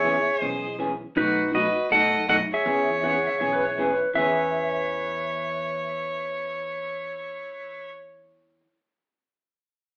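Cheerful and down-home, this short western swing fragment moves with a lilting swung eighth-note feel in 4/4. An electric lap steel guitar carries the melody up front, its dark, compressed slide tone shaped by volume swells. A clear, earthy bowed fiddle with light vibrato plays a second line alongside it. The fiddle sits up front yet sounds distant. A hollow-body jazz guitar comps underneath in a clean, fingered voice, while a woody, thumpy upright bass on gut strings is plucked in the background. At 3.0 seconds a warm pedal steel guitar, played with fingerpicks and swelling in, adds another slide line, and the lead voices drop out at 7.9 seconds as the rhythm parts ring on briefly. The band sounds like it is playing live in one room, with a wet studio reverb and an AM radio character, moving from E6 to B7 and back.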